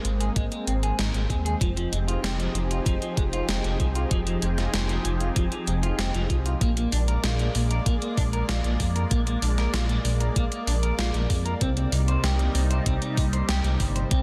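Dreamy and nostalgic, this synthwave passage cut from a longer piece drifts over Abadd9, Fm7, Bb7 and Cm7 chords, with a lush, detuned unison pad holding slow-attack sustained chords through chorus, phaser and sidechain pumping while a clean, picked electric guitar plays a riff bathed in chorus and tape echo. Up front sits a dark, rumbling detuned saw bass, pumping with the sidechain, and an overdriven, thumpy electronic kick drum joins at 0.4 s. A gated 80s digital drum machine adds hi-hat and a gated-reverb snare with a tape-toned small-room character, all inside light digital ambience and a dense, heavily limited modern master.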